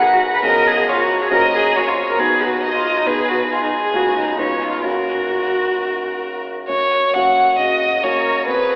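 Quick, cheerful and graceful classical-period piano trio music, cut from a longer piece, in which a focused, rich-toned violin carries the melody with vibrato and a smooth top, an expressive cello sings a second line with vibrato and portamento, and a warm, present grand piano accompanies with long sustain, all bathed in a wet cathedral reverb yet filtered through a telephone-like sound.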